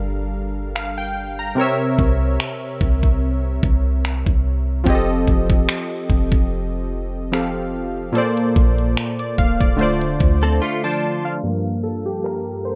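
Contemporary R&B at a slow 73 BPM in G minor, this sensual, moody excerpt sits on a lightly swung 16th-note feel and moves through chords from Gm9 and C7b9 to F7, Bbmaj7 and Dm7 before settling on Gm7. Warm analog keys carry the accompaniment throughout, their detuned sawtooth tone round and full-bodied with a fast attack, decaying notes and a chorus effect, placed up front. A deep, boomy 808-style bass with a clean sine character and dark decay anchors the low end until 10.6 s, while a trap drum kit enters at 0.8 s with a knocking kick, metallic hats and finger snaps, sounding electronic and produced, with a small-room character. From 10.4 s, just ahead of the break, a direct-recorded clean electric guitar adds brief picked arpeggios, compressed and coloured by ensemble chorus and tape echo. From 11.4 s the keys take a solo under a filter sweep, and the whole mix stays dry with a low-pass filter softening its top.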